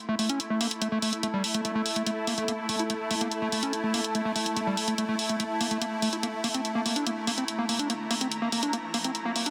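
Hypnotic and psychedelic, this psychedelic trance build-up at 144 BPM is cut from a longer piece, riding a straight 4/4 pulse as an up-front electronic hi-hat and a squelchy, gritty overdriven acid bass riff, distorted and resonant with a filter sweep, cassette tape colour and delay, drive the groove. Beneath them an evolving, morphing wavetable pad holds bright sustained chords while an ethereal, airy detuned pad floats higher, both washed in ensemble chorus and reverb, as the harmony moves from A5 to Bbmaj7(b5, no3)/A at 6.2 seconds. A very quiet riser enters at 7.2 seconds, and the whole sits in a moderate plate reverb with a dense, heavily limited modern master.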